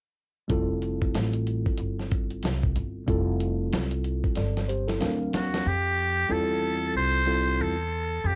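A swung 93 BPM groove in 4/4 opens this jazz-hop excerpt, with a gritty, compressed sampler-style drum kit setting a thumpy kick, medium-tuned snare and hi-hat up front, and a drum fill rolling in at 4.4 seconds before the kit drops out at 5.7 seconds. From the start, a woody, growly pizzicato upright bass holds the low end, while a worn, slightly out-of-tune tine electric piano lays down cassette-tinged chords in F major, moving from Fmaj9 to D7alt and back. The mood is warm and smooth, with light reverb around a homespun cassette recording. At 5.4 seconds a trumpet with a metal mute takes the lead for the closing stretch, buzzy and raspy with light vibrato and a distant, roomy, growling jazz tone. Bass and muted trumpet carry the piece to its close, and the clip sounds cut from a longer track.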